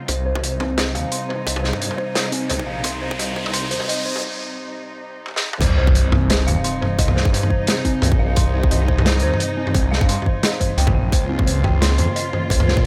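Half-time drum and bass at 174 BPM in C phrygian, this heavy, dark excerpt from a longer piece sits on a C minor chord throughout. A woody, bowed chamber cello section holds sustained chords with vibrato, pumping under sidechain and passing through a low-pass filter sweep during the build-up from 0.1 to 5.6 seconds. An eerie, inharmonic FM synth bell spins arpeggios through chorus and tape echo, while a thick, swirling detuned saw bass, saturated and phased, anchors the low end. The crunchy breakbeat kit is gritty and up front with dark cymbals and a rolled-off top, swung slightly on the sixteenths. A tight, layered electronic kick drops out at 3.4 seconds, a break follows from 4.2 seconds, and a drum fill leads into the drop. Electronic swell, riser and sub drop effects enter at 2.4 seconds, and an impact marks the drop at 5.6 seconds, all set in a small room ambience.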